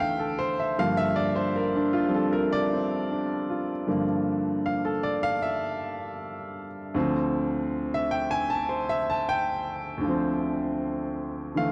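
A clear, intimate baby grand piano plays solo jazz in a cool, late-night mood, its audible action noise and long sustain sitting up front in a dry, close 1970s-style studio sound as it swings in 4/4 over Dm7 and Gm7 chords, ranging from D2 to A5 across this 11.7-second excerpt cut from a longer piece.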